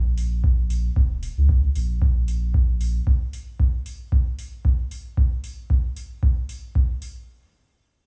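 Dub techno at 114 BPM in 4/4, with a light swing on the sixteenths, this short cut from a longer piece feels cavernous and hazy. A soft sub bass sits up front, deep and round with a triangle and square wave tone, fast attack and sustained notes ranging from Eb1 to Db2, its sidechain pumping audible until it drops out at 3.0 s. An up-front electronic kick enters at 0.4 s with a deep, analog punch and a tape-warm character, carrying on to 6.9 s. A quiet electronic hi-hat adds metallic analog shimmer from 0.2 s, sitting far back beneath the kick. The drums carry the coloration of being re-recorded in a small room, while the whole mix sounds as if played on a big sound system in a bare room, with large studio reverb.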